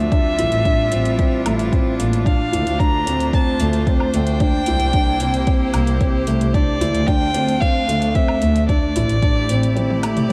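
A straight 4/4 pulse at 112 BPM drives this intimate, cinematic piano-and-strings electronica in D minor, anchored by an up-front, deep electronic kick and a deep house kit with metallic hats, toms and woodblock, over chords cycling through A7sus4, Dm7 and C7. A felt-muted upright piano with audible action noise plays a mellow riff through digital delay, a lush bowed double bass section carries the bass line with sidechain pumping, and a biting, airy string quartet holds pumping sustained chords beneath a smooth, dark solo violin melody. The kick stops at 9.3 seconds and the bass at 9.7, and a drum fill from 9.8 seconds closes this excerpt, all set in light small-room reverb.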